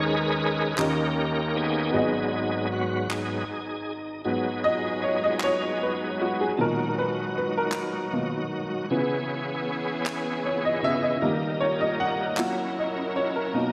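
Slow gospel in 6/8 at 52 BPM in G# minor, solemn and soulful, cut from a longer piece and set in a moderate concert hall reverb. A bright, shouting tonewheel organ sits up front with sustained chords through the whole span, lightly overdriven, with key click, chorus vibrato and a slow rotary speaker, and it takes the solo for the opening 4.3 seconds. A clear, woody upright piano plays accompaniment alongside it, slightly detuned with a short sustain, then steps forward as soloist from 4.3 seconds. Crisp, close and dry group handclaps mark the time from 0.8 seconds to 12.7 seconds. A dark, lush string section enters at 4.3 seconds, bowed with vibrato and sitting distant in the background. The harmony moves from D#7sus4 and D#7 to G#m7, then through Bmaj7, C#m7 and D# before resting on F#7.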